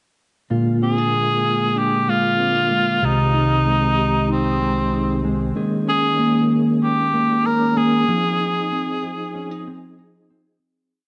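An up-front cor anglais carries this short, ethereal dream pop piece, playing a motif-based melody of call phrases in a mellow classical style with light vibrato and a touch of tape echo, from 0.8 to 10.0 seconds. Beneath it, a dark, clean electric guitar fingerpicks a rolling arpeggio pattern with subtle chorus and tape echo, sounding on to 11.1 seconds. A soft, flute-like tonewheel organ holds sustained chords as a pad, colored by chorus vibrato and a slow rotary speaker. At a relaxed 95 BPM in straight 4/4, the single verse moves through Bb7, Abmaj7/C, Eb7sus4 and Fm7 before fading out from 8.1 seconds. A wet plate reverb with a long 3.1-second tail and a softened top end give the whole piece a hazy, dreamy glow.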